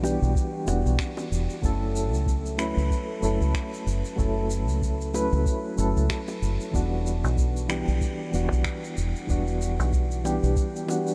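Warm and smooth, this short sunset chillout excerpt with a swung feel drifts through Em9 and F#m7 inside a dreamy mix soaked in huge ambient reverb. Soft, rounded electric-piano-like synth keys with chorus, tremolo and analog delay sit up front beside a dark, punchy, foam-muted dub bass. Shaker and finger snaps with a natural room sound and very quiet, low-tuned bongos fill the texture, while an overdriven analog kick drum with a deep, dry sound enters at 0.4 seconds.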